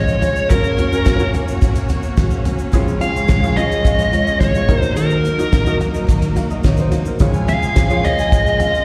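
Piano-driven pop with a warm, hopeful mood, cut from a longer piece and heard as a live gig through a venue's PA in a moderate club reverb, where a dark, overdriven electric lead guitar carries the melody up front over a soft, felt-muted upright piano with audible action noise, a bright jumbo steel-string acoustic guitar riff, lush background symphonic strings with vibrato and portamento, a grainy egg shaker and a dry 70s drum kit with a fat snare and tight kick, before a smooth, close studio violin section adds a second line at 7.2 seconds.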